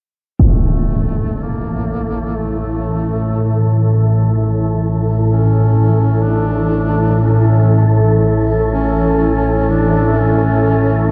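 Dark ambient drone in free time and A major, led by an up-front organ-like drone of detuned sine and triangle tones with ring modulation that enters at 1.5 s, after a huge, bright, low-passed impact at 0.4 s, as a close-miked duduk fades in with a vibrato-laden folk-style melody and a nasal, moody analog pad fades in with sustained chords in the background, while an airy, breathy wind-like texture joins at 0.9 s, the excerpt bathed in cavernous cathedral reverb and the warbling pitch drift of worn cassette tape.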